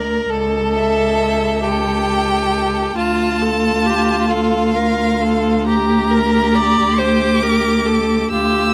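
Solemn and yearning, this slow romantic movement for string quartet moves at 45 BPM in dotted quarters in 6/8, with a rubato feel, and is tuned to A4 = 441 Hz. Across its 8.7 seconds, cut from a longer piece, all four bowed players sound together from start to finish. The first violin carries the melody high in its range with a focused, rich tone, vibrato and a smooth top. Beneath it the second violin holds an even, clear second line while the viola, close and smooth, supplies accompaniment. The cello anchors the bass with expressive vibrato and portamento, its tone rich. Light reverb surrounds the quartet as the harmony passes from A7/C# through Dm to Gm/D.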